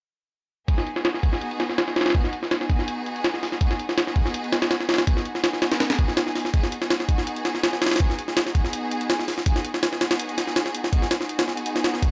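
A gritty, pitched-up jungle sampler-style drum kit sits up front with a thumpy kick, high-tuned snare and hats dulled by low-pass filtering in small room ambience, driving this dark, raw drum and bass excerpt at 164 BPM in G# minor while a lush, bowed symphonic string section holds smooth, vibrato-laden G#m7 chords beneath it from 0.7 to 12.1 seconds.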